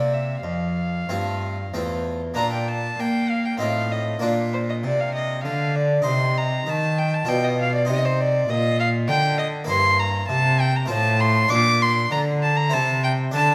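A close, up-front solo violin with a reedy gut-string tone carries the melody in this serene, dance-like baroque-style sonata movement in Bb major, moving in 3/4 at around 98 BPM with a flexible rubato feel. A single bowed cello, also period-style and close, supplies a rich bass line, while a full-bodied, plucked harpsichord with two sets of strings fills in the continuo accompaniment throughout. A moderate recital-hall reverb gives the trio an airy sense of space, and the passage, cut from a longer piece, ends on a C chord at 12.7 seconds.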